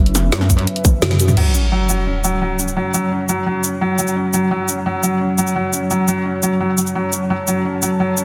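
A straight 4/4 pulse at 172 BPM drives this dark, mechanical piece of technical drum and bass in F# minor, cut from a longer track. It opens on a drop, with a nasal vowel-sweep wobble bass and a brief, aggressive metallic wobble bass carrying distortion, overdrive and chorus. Alongside them, a tight electronic kick punches up front, and the drum kit, with its woody snare, bright hats, cabasa, crash and toms, plays a fill and hits a band accent at 1.0 seconds. Meanwhile, a deep, detuned analog pad holds sustained chords all the way through, pumping with the sidechain and thickened by chorus. At 1.4 seconds an electronic sub drop lands as an impact, and a felt-muted upright piano enters with soft, intimate arpeggios, its action noise audible, pumping with the sidechain and trailing dub echo. A lush hall reverb lends a digital ambience, and the master is dense and heavily limited.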